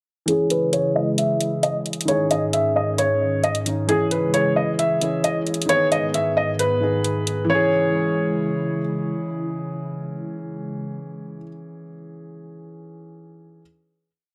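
This trap piece opens with a felt-muted upright piano playing a looping melody, a baby grand holding open-voiced chords beneath it, and metallic electronic hi-hats with fast rolls over a half-time beat. A hollow, flute-like pad of sustained chords with ensemble chorus enters moments later, and a filter sweep runs through this opening breakdown as the harmony moves from C# minor through G#sus4 to G# minor. The upright sounds soft and intimate with a thin felt tone, while the baby grand is smooth and vintage with long sustain; both pianos carry low-pass filtering and analog delay and repeat like sampled loops. The hi-hats stop at 7.4 seconds, the upright melody soon follows, and the baby grand and pad hold a final C# minor chord, the piano ringing on alone until 13.6 seconds. The mood is melancholic and menacing, with an echo-heavy mix set in a moderate spring reverb.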